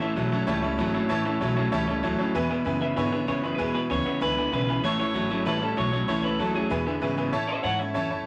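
A moderate studio reverb gives this short, rowdy rockabilly cut a lively room sound. A twangy electric guitar through a small old amp sits up front, driving a low riff until 7.3 seconds, while a gut-strung upright bass adds a dark, woody, thumpy pulse beneath it. A detuned, jangly honky-tonk upright piano also sits forward with a vintage edge, and a picked dreadnought acoustic guitar supplies full-bodied accompaniment. A second amp-driven electric guitar, bright, slightly broken-up and lo-fi, carries the melody, coming in properly at 2.8 seconds. Over a straight, upbeat 4/4 feel, the harmony moves back and forth between A and E.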